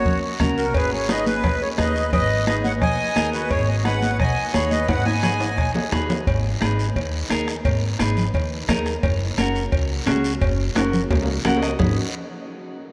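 A straight, danceable cumbia groove from a soft-beater bombo, damped high-tuned congas, a raspy guiro and ringing vintage cowbell and timbales in the background drives this fiery excerpt, as a sweet, reedy lead accordion with light tremolo tuning and a second accordion behind it carry the tune until 5.7 s over woody pizzicato upright bass and twangy, picked clean electric guitar, with drum fills and a short guitar fill at 11.3 s, in a dreamy mix soaked in cathedral reverb.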